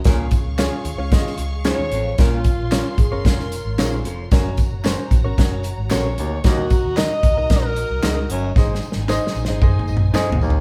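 A straight 4/4 groove at 113 BPM drives this joyful, danceable uptempo 1960s-style soul excerpt in Db major, where a punchy, up-front acoustic drum kit, a round, foam-muted electric bass, a clear baby grand piano with audible action noise, and a subtone baritone saxophone riff carry the band through Db, Bbm, Gb, Ebm and Ab, while bright, compressed electric guitar stabs, lush bowed strings, and background tambourine and handclaps fill out a live stone room, a mellow alto saxophone sings the melody from 1.7 to 8.6 seconds, and a drum fill from 8.6 seconds and a piano fill from 9.6 seconds close the cut.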